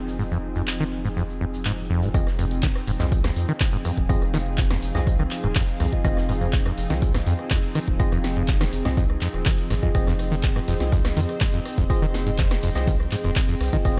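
This driving, hypnotic acid house excerpt opens on a lush, detuned unison pad, a round, deep analog bass and a warbling, lo-fi tape-like pad with phaser, all pumping against the beat, as a grainy tube shaker and a squelchy, resonant acid saw riff with overdrive and tape echo slip in within the first second. A punchy analog drum machine adds claps, hats, ride, rim and snare from 0.7 seconds, and at the drop at 2.1 seconds an up-front electronic kick arrives with a worn, slightly out-of-tune electric piano stabbing through a combo amp and a very quiet, loose acoustic kit. The shaker returns at 10.0 seconds over a single minor-seventh chord, and the production stays dark.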